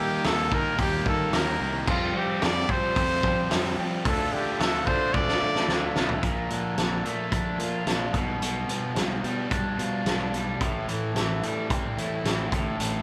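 Recorded live in one large studio room with moderate reverb, this restless, moody indie rock excerpt in D minor at 110 BPM sets a bright, punchy trumpet melody with vibrato up front until 6.0 s over a biting overdriven guitar riff, a thick fuzz guitar riff in the background, a growly fuzz fingered electric bass and a loose, gritty acoustic drum kit with a fat snare and dark cymbals, whose fill at 5.1 s carries the band into a second section moving through Bbmaj7, G7/B and Am7.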